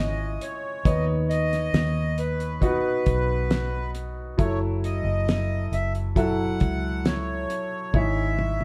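Melancholic and heartbroken, this slow pop ballad at 68 BPM, cut from a longer piece, sets a reedy, airy accordion melody over clear, long-sustaining baby grand piano chords and a round, foam-muted vintage electric bass, with a damped 70s drum kit entering at 0.4 seconds with its fat snare and tight kick before a fill at 7.9 seconds, all played live in a moderate stone room as the harmony moves from C#m through Badd9/D# and F#m7 to C#m/G#.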